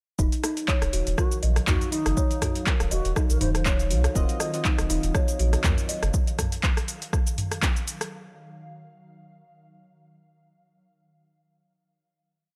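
Hypnotic and driving, this short afro house piece runs at 121 BPM in Eb dorian with a light 16th-note swing, opening straight into a drop built on a punchy four-on-the-floor electronic kick and an up-front afro-pop kit of metallic programmed hats, shaker, rim click, low toms and handclaps, while a deep, round sub bass plays a syncopated riff with sidechain pumping. A woody, hollow kalimba loops a bright 12-step arpeggio that drifts against the bar through tape echo, a close-miked bass bansuri adds vibrato-laden, tongued phrases from 1.2 to 3.6 seconds, and pulse-and-saw analog keys push syncopated drop-2 stabs with filter sweeps and chorus from 4.2 seconds. Beneath it all, an ethereal, detuned pad with slow attack, ensemble chorus and its own reverb holds an Ebm69 colour, and the mix overall sounds dry and gritty, like a hardware recording.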